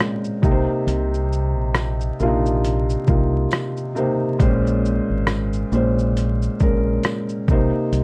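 A soft, muted felt-muted upright piano with audible action noise and a low-pass filter sits up front from the first moment, beside a gritty, compressed, pitched-down boom bap sampler-style kit of thumpy kick, hi-hat, rim click and shaker with a swung sixteenth feel, setting a melancholic, hazy lo-fi hip hop mood. A round, dark fingered electric bass joins at 0.4 s under chords shifting from Cm7 to Bbm9 and back, while a jingly tambourine plays close and dry in the background from 1.8 to 7.3 s. Light reverb, vinyl crackle and a dark, warm production give this short fragment of a longer piece its dusty glow.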